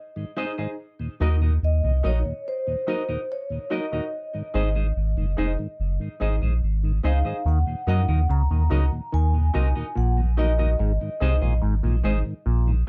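A dry, close recording with a 1970s studio feel opens this laid-back, hypnotic reggae excerpt in Eb dorian at 72 BPM, cycling between Ebm and Ab in a straight 4/4. A soft-mallet vibraphone carries the ringing, metallic melody through tape echo, over a dark tonewheel organ with light overdrive, chorus vibrato and slow rotary speaker, a clean, twangy electric guitar also fed through tape echo, woody upright piano stabs, and a deep, round sub bass sitting up front from 1.2 seconds. At 7.5 seconds an overdriven clav enters with a percussive, stringy riff coloured by phaser, thickening the groove for the second section.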